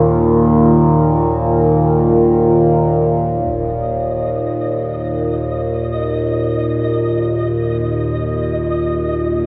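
Desolate and unsettling, this dark ambient drone in free time, cut from a longer piece and tuned to A4 = 436 Hz, sets a deep, moody pad with chorus over a resonant, overtone-sweeping drone low in the register, both up front from the start in a vast cathedral-like space, as a huge but very quiet impact lands at 3.4 seconds, the harmony shifts from Bbsus4/Eb to Eb5, and a grainy, flickering high texture on Eb5 enters at 3.8 seconds.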